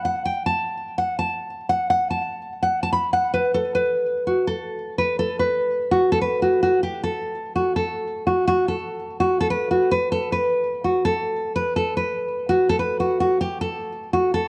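The recording sounds like worn, warbling old cassette tape, its pitch drifting unsteadily beneath light reverb and a small room ambience. This short cut from a longer hip hop piece moves at 146 BPM in 4/4 with a half-time feel, carrying a dark, menacing mood. A single acoustic nylon-string guitar plays alone for the full 14.5 seconds, fingerpicked and full-bodied with a deep classical character, sitting up front in the mix. Its line stays between F#4 and B5, and audible finger squeaks add a close, human texture to the playing. The passage shifts into a new section at 3.3 seconds and holds there until the end.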